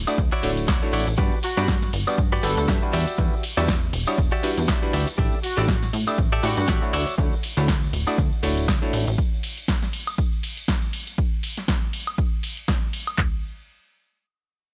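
A swung sixteenth-note groove in four drives this sunny, joyful slice of filtered disco house, cut from a longer piece and built on a pair of analog drum machines. One supplies an overdriven, up-front kick with handclaps and toms, while the other lays a tape-tinged snare, hi-hat, ride, shaker and woodblock under sidechain pumping, with a close acoustic tambourine tucked into the background. A plucky, wave-folded analog bass with a fast, decaying filter snap and tube saturation pumps beneath a stringy, phased clav and a bright, twangy clean guitar riff recorded direct. From 1.4 seconds a smooth-topped, jazz-style horn section carries the melody through a dub echo over a Dmaj9, Gmaj7, Em9 and A7sus4 progression. The harmony drops out at 9.2 seconds, leaving the drums to run on dry and punchy with little reverb until about 13.3 seconds.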